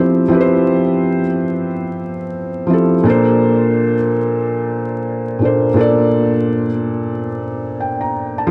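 Dreamy and cosy, this short hip hop excerpt drifts along at 88 BPM in 4/4 with a relaxed swing on the sixteenths. A felt-muted upright piano plays alone throughout the full 8.5 seconds, ranging from Bb2 to Bb5, its tone soft, dark and intimate, with thick felt and audible action noise that bring the instrument close and up front. Tape echo trails the piano's notes, adding a mellow haze to its muffled voice. The harmony moves from Fmaj7 to Bbmaj7 at 3.0 seconds, lending a gentle glow. A moderate plate reverb with a 2.6-second decay and a layer of vinyl crackle give the recording a lived-in, nostalgic atmosphere.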